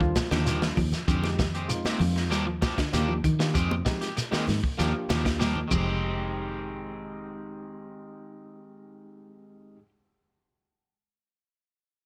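Afrobeat in a driving, defiant mood, this short cut sets a gritty, saturated breakbeat kit up front, with dark cymbals and drum fills, against a round, foam-muted fingered bass, a twangy picked guitar playing stabs, a warmer slightly broken-up guitar arpeggiating in the background, a worn, slightly out-of-tune tine electric piano bathed in plate reverb, and very quiet congas, grainy shekere and woody claves, with the drums and hand percussion dropping out near 6 seconds while bass, keys and stabs carry on over alternating Ebmaj9 and Fm9 chords.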